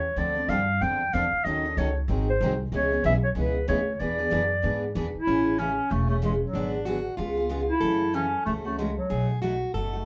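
A breathy, whispered clarinet leads this lively jazz manouche swing at 188 BPM in A major, its mellow, scooped notes and light vibrato sitting up front beside a thumpy, woody pizzicato upright bass. Two picked acoustic guitars supply accompaniment, one jumbo-bodied with fresh strings and audible finger squeak and the other boxy and set in the background, before a bright plugged-in steel-string guitar takes up a second line at 5.3 s. The band plays live in one room wrapped in a small, wet reverb, and this fragment of a longer piece cuts away at 10.1 s.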